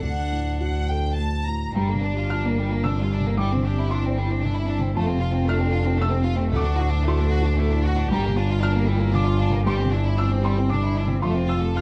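An up-front bowed double bass anchors this intimate, hopeful neoclassical fragment in a rubato 3/4, beneath a floating, sul tasto violin section carrying the melody, a single cello tracing a pure second line and a boxy, felt-muted upright piano offering mellow accompaniment, set in light reverb and a dark production as the harmony cycles through D, Gm7, Cadd9/G and F.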